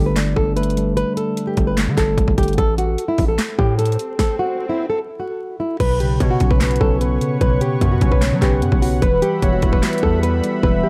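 A thumb-plucked nylon-string guitar with tape echo carries the melody up front in this brooding, hard-hitting half-time trap excerpt, over a mellow tine electric piano, a punchy, saturated 808-style bass and a trap kit with a hard-clipped kick, sharp snare, bright hats, handclaps and crash, with vinyl crackle throughout; an electronic swell sounds in the background before the beat stops at 4.2 seconds, then from 5.8 seconds a velvety, detuned synth lead with chorus, vibrato and tape echo joins, and a smooth sawtooth analog pad enters at 6.1 seconds.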